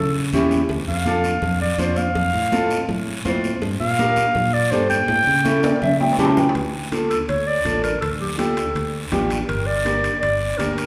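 A mellow, smooth-topped clarinet leads up front over a bright, growly fingered electric bass from the opening of this passionate, driving cumbia at 164 BPM, joined by soft-handed, high-tuned congas, a dark, clean electric guitar, ringing cowbell and timbales, and a raspy guiro, with the clarinet soloing until 6.6 s before a guitar fill and drum fill lead into a D harmonic minor passage over Dm and Gm, the band playing live together in a large, reverberant studio room.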